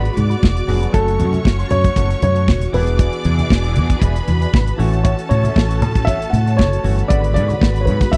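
Glamorous and driving, this disco passage, cut from a longer piece, sets a dark, intimate baby grand piano melody against a lush, distant bowed string line and sustained string chords, with a mellow auto-wah clav and a clean, wah-treated electric guitar in the background, a fingered bass and a tight, muffled funk drum kit up front, and very quiet low-tuned congas entering at 0.2 seconds, captured in a dry, close 1970s-style studio sound.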